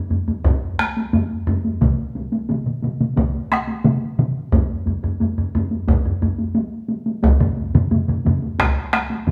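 Ceremonial and powerful, this short passage from a longer Japanese taiko piece moves at a straight 88 BPM in 4/4, with a hard-stick solo drum, compressed and saturated, sitting up front from 0.1 s alongside three taiko ensemble layers. One ensemble strikes with heavy sticks in a vintage, band-limited tone from 0.1 s, another joins at 0.4 s with heavy sticks close and dry, and a third with hard sticks in a small-room sound comes in at 1.8 s. The players perform live together in one room, bathed in a lush large-studio reverb.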